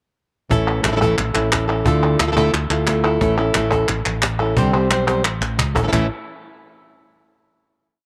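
A fingerpicked flamenco guitar sits up front, its fresh strings sounding warm as rasgueado strumming with taps on the top carries a mournful, fiery flamenco piece at 177 BPM in 4/4, moving through A, Dmadd9 and Csus2 before settling on a final A5 chord at 5.9 seconds. Beneath it, a dark, round fretless electric bass plays a punchy dotted figure, while crisp palmas hand claps mark the cycle from 0.7 seconds. In the background, a snappy, close cajon adds bass tones and slaps, plus a drum fill from 5.1 seconds, all set in a moderate spring reverb.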